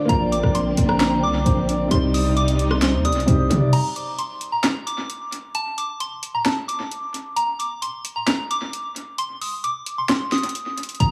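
Echo-heavy and lightly reverberant with a small-room feel, this melancholic, hard-hitting half-time trap passage at 132 BPM opens on Bbadd9 and Cm with a pure FM synth bell melody, a breathy, warbling flute-like synth lead, a felt-muted upright piano with audible action noise, lush bowed strings with vibrato and portamento, a punchy sine 808 bass and an overdriven electronic trap kit with sharp snare, hats, handclaps, rim clicks and crash cymbal, until at 3.7 seconds the lead, piano, strings and bass fall away for a break carried by the bell and drums, with the 808 hitting again at 11.0 seconds.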